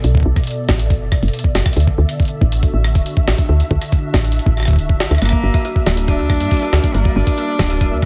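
A round, dark FM bass sits up front with a thumpy, pitched-up electronic kick in this intricate, cerebral IDM fragment at 139 BPM. Gritty, compressed jungle-style hi-hat, rim click and high-tuned snare play over a hollow, flute-like pad with ensemble chorus and a flickering, grainy texture in the background, while the chords move from Bm7 to Dadd9 to Gm. At 5.2 seconds a nasal, boxy bowed cello enters with vibrato, portamento and tape echo, alongside airy plucked kalimba arpeggios through analog delay, giving a dry but echo-heavy mix.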